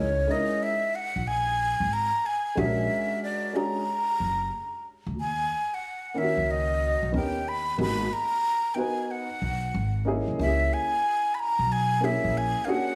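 Smoky and cool, this jazz-hop fragment from a longer hip hop piece sways with a swung sixteenth-note feel. A breathy silver concert flute carries the melody in a close-miked, straight tone, its tongued notes unsteady and sitting clearly at the front of the mix. Beneath it, a dark upright piano supplies the chords with a worn, intimate character, audible action noise, a touch of detuning and long, lingering sustain. A pizzicato upright bass with steel strings anchors the low end in a growly, thumpy tone and drops out at 12.5 seconds, just before the flute and piano finish at 12.9 seconds. The harmony moves through minor-leaning jazz colours, from C#m69 through altered dominants to G#m9 and back to C#m6, and a light small-room reverb gives the trio an intimate, late-night studio feel.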